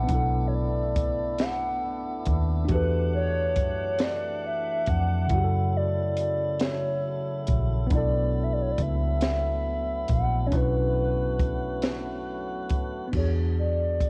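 A hollow, woody clarinet-like synth lead with chorus and vibrato sings a yearning melody over a worn, slightly out-of-tune tine electric piano, a lightly overdriven tonewheel organ holding lush chorused chords until 13.1 seconds, and a round, foam-muted fingered bass with transformer saturation, while a compact cocktail drum kit with a high-tuned snare and punchy kick enters at 0.1 seconds, giving this late-night, slow six-eight R&B excerpt in B minor at 46 BPM a soft cassette-tape haze as Bm11, Em11 and F#m7 turn toward a closing E9.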